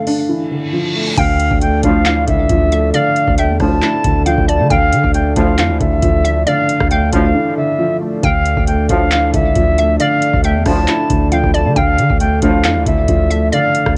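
Melancholic and eerie, this half-time hip hop and trap passage in D minor moves at 136 BPM. It opens on a Dmadd9 chord with a soft, mellow felt-muted upright piano under a low-pass filter, a bouncy, detuned hollow square pluck tucked in the background with chorus and tape echo, and a booming analog drum machine with a deep kick, metallic hi-hats, handclaps, rim clicks and crash cymbal. An electronic reverse cymbal leads into the main section, where at 1.2 seconds a reedy silver concert flute takes the melody, airy and up front with rolled-off highs. Alongside it come a long, deep, sine-toned 808-style bass, a glassy, ethereal glass harmonica holding sustained chords, and warm, classical-style brass ensemble stabs in the background. A brief break arrives at 7.4 seconds, and the piano, pluck, drums, harmonica and brass carry a cassette tape colouring, all within a home cassette recording with light reverb and small room ambience, cut from a longer piece.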